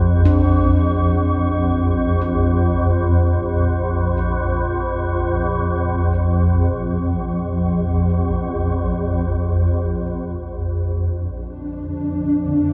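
A swarming, detuned drone sits up front from the start, low and tense, its wave-folded sine and triangle tones evolving through a granular haze in this ominous, cavernous dark ambient excerpt cut from a longer piece. Soft bronze gamelan-type bossed gongs, struck with padded beaters, ring in the background with metallic, beating arpeggios through delay and shimmer reverb until 8.1 seconds. At 11.6 seconds a blurred, full-bodied granular cloud pad enters with mellow sustained chords, all set in a huge ambient reverb and a cassette-tape sound.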